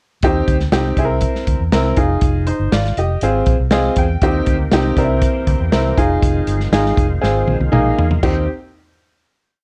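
Uptempo 1960s-style soul with a joyful feel, where a bright, woody upright piano plays close-voiced quarter-note chords with grace notes and a short fill at 3.5 seconds over a dark, foam-muted electric bass line with chromatic approach notes and a punchy, airy drum kit carrying a backbeat groove with vintage sampler grit, while a gritty overdriven tonewheel organ with slow rotary speaker enters at 4.2 seconds as a background pad before a drum fill leads into the final chord, all heard with light studio reverb and a cassette tape character.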